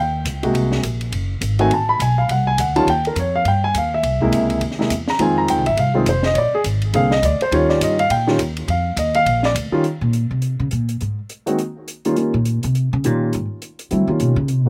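Playful and warm, this is a jazz piano trio excerpt swinging at a brisk 207 BPM in 4/4, centered on Eb mixolydian. A dark, mellow grand piano sits up front with an intimate, natural tone, its action noise audible as it takes the opening solo through the first 9.8 seconds over shifting chords such as Eb7, Ab9, C7alt and Fm7. The upright bass, plucked and woody with steel strings, also sits close and steps forward for its own solo from 9.8 seconds to the end, moving between Bbsus2, chordless passages and Eb9. An open acoustic drum kit, quieter in the mix, enters at 0.3 seconds with ride cymbal, hi-hat, a high-tuned snare and a boomy kick. The sound is dry and close, with little reverb.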